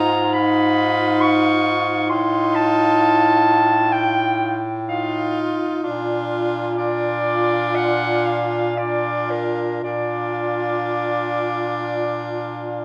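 Set in a wet recital-hall reverb, this melancholic, solemn classical fragment for single-reed quartet moves at a rubato 55-69 BPM in 4/4, with a roomy, distant clarinet carrying the melody up front, a clear alto saxophone with vibrato and a smooth top holding the second line, a tenor saxophone supplying accompaniment, and a bright, vintage-toned bass clarinet anchoring the bass up front as the harmony passes from Fm7b5/Ab through F7/A to Bb at 5.8 seconds.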